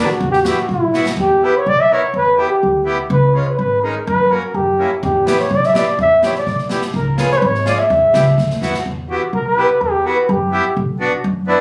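Captured on a phone in a club, this festive, soulful klezmer fragment carries a moderate small-room reverb that keeps the band close and immediate. At 125 BPM in a straight 2/4, in E dorian sharp4, a dark, breathy cornet leads up front with a soft attack and a whispered, intimate, jazz-inflected tone, set in plate reverb. A reedy, mid-forward accordion, also up front, supplies the accompaniment, while a woody, growly upright bass with steel strings gives pizzicato support with a thumpy bottom. The street-band drum kit, with a boomy kick and a medium-tuned snare sounding airy and polished, plays at the opening, drops out at 1.2 seconds, and returns at 5.0 seconds with a closing fill. From 8.9 seconds the cornet takes a solo over the accordion and bass as the harmony moves from E minor toward B minor.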